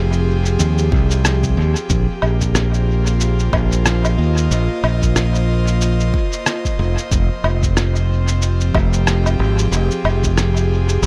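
The rhythm sits at a relaxed 92 BPM in 4/4, with a 58% swing on the sixteenths giving this meditative, deep ambient dub fragment a gentle lilt. An electronic cabasa, rim click and woodblock set the pulse from 0.1 seconds; they sound sampler-style, pitched down, muffled and tape-tinged, soaked in dub echo and re-recorded in a small room. A layered, deep electronic kick joins at 0.9 seconds and drops out at 10.3 seconds, also carrying that small-room character. Underneath, a modern fingered electric bass stands bright and up front, direct in tone with tube saturation, holding the low register from F1 to Eb2. Over the whole span an airy, breathy pad sustains a single Fm9 chord in F minor, its detuned sawtooth and triangle layers with a noise edge blooming through a slow attack and long release, thickened by chorus and a vintage 12-bit sampler grit. The overall mix stays dry, with little reverb.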